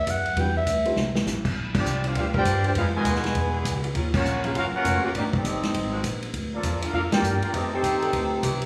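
Swinging and energetic, this fast big band swing excerpt at 201 BPM in Bb major opens with a raspy, growling clarinet solo over woody pizzicato upright bass, a vintage drum kit with dark cymbals, and brief background baby grand piano, then from 1.8 s a tight, dark trumpet section carries the melody with a trombone section on a second line, joined at 2.3 s by a very quiet, clear saxophone section holding sustained chords, punctuated by band accents and set in a wet studio reverb heard from further back.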